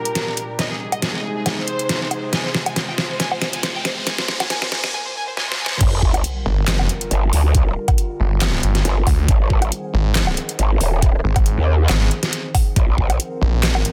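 A dense, heavily limited modern master with light digital ambience carries this chaotic, heavy wobble dubstep cut, taken from a longer piece and set in G phrygian at 138 BPM with a half-time feel and a slight swing on the sixteenths. It opens with a build-up: a clear chamber violin section with vibrato plays an intense bowed melody through a low-pass filter and tape echo, while an evolving wavetable pad with a warbling, vintage character holds chords in the background, drenched in chorus and reverb and pumping against the beat. A dubstep drum kit with a deep, clipped snare, metallic hats, handclaps, woodblock and crash fills beneath it, and a riser and sub drop in the background build tension from 1.8 seconds. The drop lands at 5.8 seconds, where the violins stop and a knocking electronic kick enters up front alongside a growling, wobbling bass that is bright, saturated and formant-filtered. 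At 6.5 seconds a snarling, detuned sawtooth bass with a moving notch and heavy distortion joins it, and the two basses dominate over chords moving from Gm7 through Ab to a closing Bbsus2.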